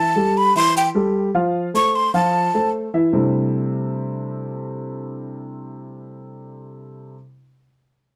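Danceable and sophisticated, this short jazz excerpt moves at a straight 151 BPM in 4/4 in C major, with chords passing from Emadd11 to F and settling on C69 at 3.1 seconds. A breathy, close-miked flute carries the expressive melody with vibrato, a crisp chiff and plate reverb, stopping at 2.7 seconds. The dark, woody upright piano, slightly detuned and long in sustain, accompanies throughout until 7.2 seconds in a moderate studio ambience with a dark, warm production.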